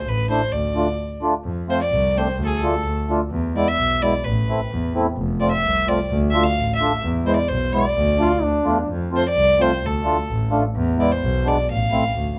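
Festive yet soulful, this klezmer excerpt in 2/4 sets a reedy, gut-string violin with light vibrato up front over a focused, bowed double bass and a dark, mellow accordion with slow beating, pausing for a brief break at 1.0 seconds before a punchy, bright trombone adds a short second line from 8.2 to 8.9 seconds, framed by a small room's moderate ambience.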